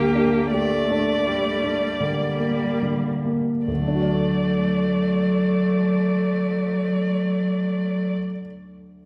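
Serene and warm, this rubato romantic movement for piano quartet in triple time finds a rich, vibrato-laden violin singing the melody with soft attacks and portamento, a clear, focused cello carrying a second line, and a smooth-topped viola joining an intimate grand piano with audible action noise in accompaniment, the opening slowing as Gm/D gives way to D at 3.7 seconds before the strings fall away at 8.1 seconds and the piano sounds alone until 9.1, heard from further back in a wet recital hall in this fragment of a longer piece.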